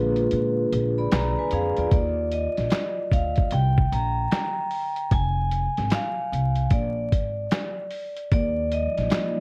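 A vibraphone struck with hard mallets, its motor off, rings out with a metallic, band-limited vintage tone and plate reverb, carrying the accompaniment and then taking a solo from 1.9 seconds to the end of this cosy, dreamy lo-fi hip hop fragment cut from a longer piece. Underneath, a pizzicato upright bass with gut strings gives a woody, thumpy low end, while a dusty soul sampler-style kit of kick, snare, hi-hat and handclaps brings compressed 12-bit grit, with the kick dropping out from 0.3 to 1.9 seconds. A deep, detuned analog pad with chorus holds moody sustained chords at the opening and returns briefly at 8.8 seconds. The groove sits at 75 BPM in 4/4 with a lazy swing on the sixteenths, moving through Eb major from Bb7b9 toward a closing Ebmaj9. A small room ambience and the sound of worn cassette tape, with vinyl crackle and warbling pitch drift, wrap the whole fragment in a nostalgic haze.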